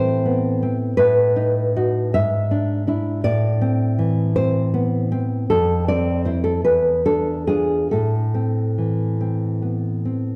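A lone nylon-string guitar, warm and up front, opens this melancholic, wistful romantic excerpt in A minor, moving freely in a rubato 6/8 at around 45-58 BPM through chords from Am and B7/A to E7b9 before returning to Am at 7.9 seconds, all bathed in the long, wet reverb of a church or concert hall.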